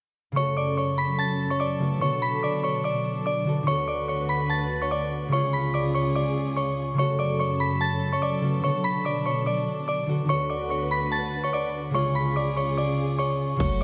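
A ringing, fingerpicked concert harp opens this cold, ominous drill excerpt at 145 BPM in a half-time feel, joined at 0.4 s by a crystalline FM bell melody with chorus and dark, woody bowed strings holding lush sustained chords through a looping F# minor, B minor seventh, D sixth and C# progression in F# harmonic minor, before a deep sine 808 bass and an electronic drill kit with hard-clipped kick, tape-warm hats and crash arrive only at 13.6 s under light reverb.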